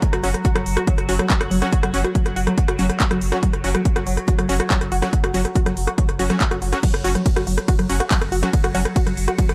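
An overdriven, up-front kick and an overdriven techno kit of crash, handclaps, smooth hi-hat, ride and rim click drive this hypnotic peak-time techno excerpt at 141 BPM in 4/4, with a wave-folded drone of moving overtones and a resonant notch sitting in the background with chorus and its own reverb. From 0.1 s a tight, detuned sawtooth-and-square sequenced riff with a filter pluck, tube saturation and tape echo joins a deep, round sine sub bass held on F#1, both pumping against the kick, and from 0.2 s punchy unison supersaw stabs with delay cut in until 8.8 s. The whole passage stays on F#, tuned slightly under concert pitch, in a dry mix that carries some lossy compression artefacts.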